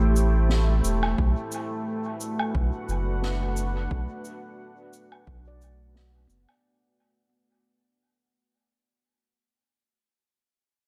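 Ambient dub fragment, meditative and spacious, where a deep, moody detuned pad sustains Am7 and Bm7 chords through chorus and its own reverb, a round, nasal analog bass sits up front, a very quiet handpan rings out mellow arpeggios until 8.8 s, acoustic cabasa, snare and woodblock carry a dub echo, and a faint overdriven electronic kick enters at 1.2 s, all set in a small room as the clip fades out.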